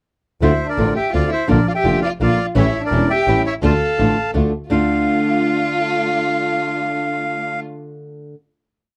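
A sultry, dramatic tango in 3/4 at 168 BPM in D minor opens at 0.4 s with a reedy bandoneon carrying a motif-based melody, partly doubled in thirds, over a single bowed violin second line with vibrato, soft attack and portamento, fingerpicked flamenco guitar in short chords, and a focused, bowed double bass accenting beat one. From 2.6 s a lush, bright studio string section adds bowed stabs in the background, also in waltz time, while the bass stops at 4.8 s as the ensemble settles onto a final chord. The rubato feel sits in a dry, close 1970s-style studio sound with light reverb.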